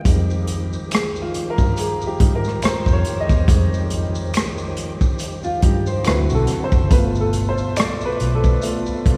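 Smooth and introspective, this excerpt from a longer R&B and neo-soul piece moves at an unhurried 70 BPM in 4/4, with a gentle sixteenth-note swing. The clear upright piano takes the lead as a solo throughout, its woody, slightly detuned tone and long sustain colouring chords that rest on Fm9 before shifting to D7 and G9 near the close. Beneath it, a bright tonewheel organ holds sustained chords in the background, reedy and clean with key click, a slow rotary speaker and chorus vibrato. A vintage muted fingered electric bass gives a round, foam-muted low end, while a crunchy breakbeat drum kit sits up front with a tight kick, hi-hat and rim click, saturated and gritty with a rolled-off top. Maracas and finger snaps add a faint live-room texture, and an electric guitar through a small old amp, slightly broken-up and picked, slips in briefly from 5.4 to 6.3 seconds as a second line. The whole mix is bathed in a wet cathedral reverb with a 4.2-second tail and dusted with vinyl crackle, giving it a spacious, hall-like glow.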